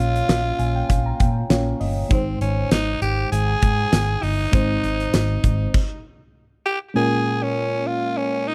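A lightly swung 4/4 groove at 99 BPM drives this moody, urgent 1980s-style pop excerpt in Bb dorian, where a raspy, growling tenor saxophone with tape echo leads over a mellow, chorused FM electric piano that adds an early fill, a dark, foam-muted fingered bass and a huge arena drum kit with a fat snare and punchy kick, until the bass stops at 5.7 seconds and the drums at 5.9, leaving saxophone and piano in the dry, close 1970s-style studio sound as the harmony settles on Bbm7 at 7.0 seconds.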